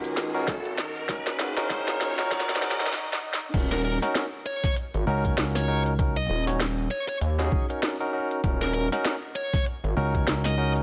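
A gritty, up-front mix with light digital ambience and a dulled top end opens this swaggering glitch hop excerpt, moving at 98 BPM in 4/4 with a swung sixteenth feel in Eb minor pentatonic over an Ebm7 chord. The first 3.5 seconds form a build-up: a very quiet, reedy chamber string section holds bowed chords, a deep, detuned ambient pad with chorus hums faintly alongside, and a grainy egg shaker sits close and dry in the background while electronic riser and swell effects and a drum fill lead into a short break. Throughout, a barky tine electric piano fires off bright, overdriven stabs coloured by 12-bit sampler grit, tape echo and sidechain pumping, while a saturated, resonant synth bass built from square, sawtooth and sine waves drives the low end. The drums combine a compressed, pitched-down kick, overdriven and re-recorded in a large room, with a layered electronic kit of cracking snare, crisp hats and crash cymbal. 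Shortly after the drop at 3.5 seconds, a bluesy lead guitar enters at 3.7 seconds with picked, distorted phrases roughed up by sampler grit and tape echo. A round, punchy fingered electric bass adds a Db2 note in two short bursts, the first arriving at 5.1 seconds.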